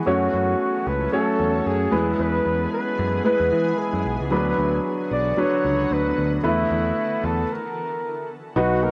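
Nostalgic and glossy, this short pop clip moves at 113 BPM with a light sixteenth-note swing through F#m, E, Bm and Esus4, carried by a warm flugelhorn melody with vibrato over a clear, intimate concert grand piano, a growly picked electric bass and a shimmering, ethereal pad with chorus and reverb. The piano and pad share a plate reverb, and cassette tape colours the piano, pad, flugelhorn and marimba, giving a homespun feel in a small booth. A stop at 7.5 s breaks the flow before a dry, buzzing marimba slips in softly at 8.6 s.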